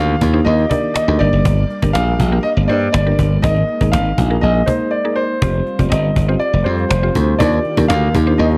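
A driving, energetic dance-pop excerpt opens with a concert grand piano carrying the melody through tape echo over a round, woody synth pluck with chorus, very quiet vintage organ-like ensemble strings holding phased chords, a bright, punchy slap bass up front and a close, dry cajon, set in a dark production with light studio reverb and a brief break at 4.9 seconds.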